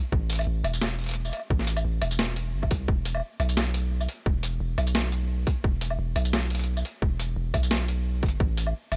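A deep, sine-toned 808-style bass and a tight, overdriven electronic kick open this tense, dark excerpt of half-time drum and bass at 174 BPM in E minor. The long sustained bass sits low, between E1 and C2, with a fast attack and a decaying tail, its tube saturation adding weight up front in the mix. The layered, produced kick carries its own overdrive, and both of these parts start together at 0.1 seconds. Just after, at 0.3 seconds, a gritty, sampler-style boom bap kit joins with hi-hat, tambourine, woodblock and a high-tuned snare, sounding compressed and pitched down. A digital ambience surrounds the parts, and the kick drops out at 8.5 seconds while the bass and sampled kit carry on to the close of this single brooding section.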